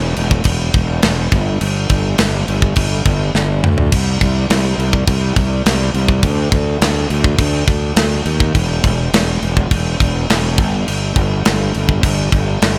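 Heavy metal at 104 BPM in a straight 4/4, this short cut from a longer piece feels relentless and dark. A fuzz-laden fingered electric bass opens at 0.0 s, its bright, growly, overdriven tone sitting up front and ranging from E1 to D#2. A tight metal drum kit joins at 0.2 s, recorded acoustically in a studio room with a mid-forward character, a medium-tuned snare, a tight kick, crash cymbal and toms. A brief drum fill arrives around 3.4 s, breaking up the steady drive before the pair carry on together to the end at 12.8 s. Light reverb gives the sparse bass-and-drums arrangement a touch of space while both parts stay close and forceful.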